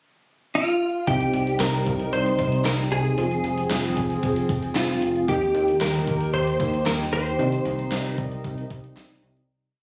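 A clean, up-front electric guitar carries hook phrases through ensemble chorus and tape echo from 0.6 s in this cool, melancholic C minor synth-pop piece at 114 BPM, joined at 1.1 s by a glossy pulsing eighth-note synth bass, round warbling electric-piano-like keys holding chords in the background and a gated drum machine with a thumpy kick, gated-reverb snare, hi-hat and handclaps, with a shimmering slow-attack pulse-width pad entering at 1.3 s, all moving through Cm, Fm and Eb before fading out from 7.4 s, heard through plate reverb as if captured on a phone in the room.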